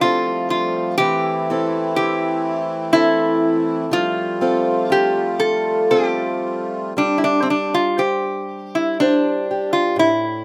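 Tender and nostalgic, this short excerpt from a longer Celtic folk slow air moves in an unhurried, rubato three-time. A metal-body resonator slide guitar carries the melody up front, its bright, nasal, metallic voice sung through a slide and plucked with fingerpicks. Beneath it, a fingerpicked acoustic archtop guitar supplies a boxy, warm accompaniment, also close and present, with a slapback echo and the occasional finger squeak. A reedy, sweet accordion holds sustained chords with a light tremolo tuning until about 6.9 seconds, leaving the two guitars alone for the closing stretch. The harmony circles from Fadd9 to C6/E and back, then shifts to Gsus4 at 7.0 seconds, and the dry outdoor sound keeps every detail plain and intimate.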